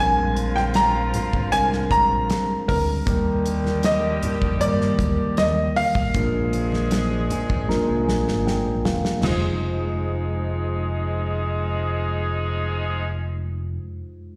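This excerpt sounds like a live gig heard through the venue's PA, with a moderate club reverb and the air of a recital hall around it. It is lush 1970s-style soul in F dorian at 78 BPM in straight 4/4, with a cinematic, bittersweet mood. A clear, natural baby grand piano carries the melody up front with short sustain and a slapback echo until 8.4 seconds. Beneath it, a mellow tine electric piano plays the accompaniment through its built-in speakers, adds a fill near the end of the opening passage, and carries on until 14.4 seconds. A vintage horn section with light vibrato and octave doubling punctuates with tight pop-style stabs, while an overdriven, amped fingered bass sits punchy and up front. Very quiet, bright, low-tuned congas and a damped, dry 70s drum kit entering at 0.4 seconds fill out the groove as the chords move from Bb13 through Ebmaj7 and Bb7 to Fm7, the drums adding a fill just before the arrival of Fm7.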